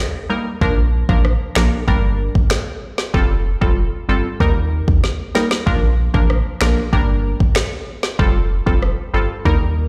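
A big sound system in a bare room lends this sunny, summery dancehall excerpt a large studio reverb and a light digital ambience, cut from a longer piece at 95 BPM in a straight 4/4 in Bb major. A crisp, detuned wavetable chord stab opens alone, sitting up front with a bright filter pluck and fast, decaying attacks that spell out a cycle of Eb, Bb, Gm and Fadd9. At 0.6 seconds a deep, punchy sine sub bass enters with a pitch-drop attack and sustained notes. An electronic afro-pop drum kit arrives at the same moment, up front and overdriven, pairing a deep kick and woody snare with finger snaps and rim clicks, all re-recorded in a small room. The drums break into a fill from 5.0 to 5.7 seconds before the chord cycle comes round again.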